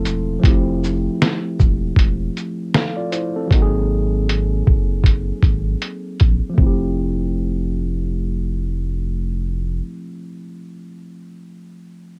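Lo-fi hip hop at a nostalgic, dreamy 78 BPM in F major, swung on the 16ths. A worn, slightly out-of-tune tine electric piano sits under a low-pass filter and cassette tape character, with a filter sweep from 0.4 to 6.6 seconds as the chords move from Fmaj7 to Ab9 and back. A compressed, pitched-down sampler-style kit of thumpy kick, fat snare, hi-hat and shaker drops out at 6.8 seconds, while a deep, saturated sub bass with a fast attack holds the low end until 9.8 seconds, after which the piano carries this dry, home-taped excerpt to its close.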